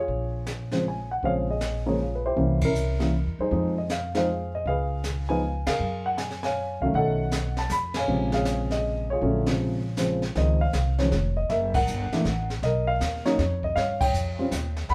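A dark, mellow grand piano sits up front and carries the melody in this cool, late-night jazz trio waltz, a short cut from a longer piece with a swung three-beat feel. Its natural tone has a short sustain. Beneath it, a pizzicato upright bass with gut strings gives a woody, thumpy low end throughout. The brush kit enters at 0.1 seconds, pairing a high-tuned snare and boomy kick with dusky cymbals in an airy, polished sound. The trio hits shared accents, the drums add a brief fill at 5.4 seconds, and the harmony moves into a new section in a major key at 10.4 seconds. The band plays live in one studio room, wrapped in a wet reverb.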